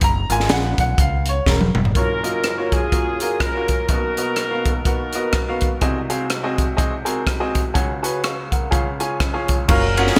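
A bright 1980s-style digital production bathed in lush hall reverb frames this reverent, hopeful uptempo gospel fragment with a lilting swing feel, opened by a brilliant, woody upright piano out front over a crisp fusion drum kit with a high-tuned snare, punchy kick and gated reverb, plus a direct, bright fingered electric bass. A drum fill leads in at 1.5 seconds, and at 1.9 seconds a distant, roomy horn section with delay carries the melody, joined by a breathy, subtone alto saxophone sitting in the background, while a very quiet, mellow French horn section holds sustained chords with light vibrato. The bass drops out until it returns with the horn section at 9.7 seconds, as the harmony moves from F#maj7 through Bmaj7, G#7/B#, C#sus4 and C# before settling back on F#maj7.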